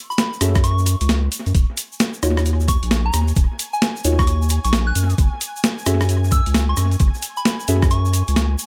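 A dry, echo-heavy mix carries this soulful, late-night two-step garage excerpt, where an overdriven, knocking electronic kick and a thick, saturated sub bass sit up front beside a gritty, tape-toned breakbeat kit of swung hi-hat, rim click and snare, while a grainy tube shaker adds bright texture, deep nasal chord stabs trail dub echo, a pure FM bell with chorus and analog delay carries the melody, and from 1.9 seconds a faint, warbling, ethereal pad pumps in the background.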